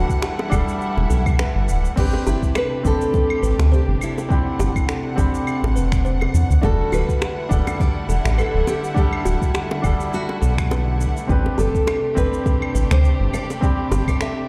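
Sunset chillout with a relaxed, smooth mood, cut from a longer piece and riding a gentle swung groove. A fingerpicked nylon-string guitar with fresh strings carries the melody, while a clear, polished baby grand piano supplies the accompaniment and a woody, mellow kalimba plucks arpeggios in the background, all three touched with digital delay. A rich studio string section holds sustained, bowed chords with smooth vibrato, moving between Em11 and Am11 harmonies. Up front sits a round, deep analog bass with tube saturation and a dark, evolving tone, joined by a soft, tape-warm electronic kick drum and an R&B drum kit of claves, crash cymbal, finger snaps and shaker. Tight, high-tuned bongos played with hard hands enter at 0.4 seconds, close and dry in the background. The recording sounds as though played on a big sound system in a bare room, with a large studio reverb surrounding it.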